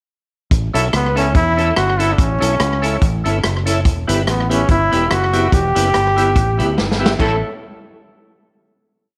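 A brilliant, punchy trombone with vibrato carries a motif-based melody up front from 1.0 seconds in this joyful, upbeat ska piece in A mixolydian at 144 BPM, over a round walking electric bass with slides, a vintage drum kit's side-stick ska beat with dark cymbals and a fill at 6.8 seconds, twangy off-beat clean guitar chops, and gritty overdriven organ stabs with slow rotary sway in the background, moving from A to Em before landing on a final A chord at 7.2 seconds.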